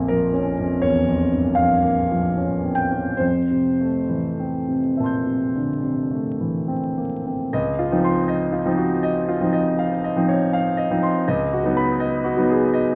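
Dark, warm sound with vinyl crackle in a reverberant recital hall frames a dreamy, luminous excerpt of impressionist solo piano in a rubato 5/4, drifting between 67 and 86 BPM, where a clear, open, up-front concert grand with deep bass spans Bb1 to G6 over lush chords like Bbm6 and Fmaj9 before shifting from F major to Db major at 7.5 s.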